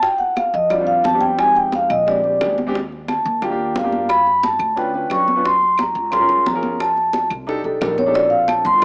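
A brisk, straight 4/4 pulse at 177 BPM drives this lively, danceable Afro-Cuban jazz fragment, where a mellow, ringing vibraphone played with soft mallets and motor off solos up front from the start over tight, high-tuned bongos and vintage, band-limited congas struck with hard hands, joined by woody claves in the background at 0.4 seconds, a dark, thumpy pizzicato upright bass on gut strings at 0.5 seconds and an intimate grand piano with audible action noise at 0.7 seconds, as the harmony moves from Fsus2 to Bbmaj9 in a rough home demo mix with small speaker sound and light small-room reverb.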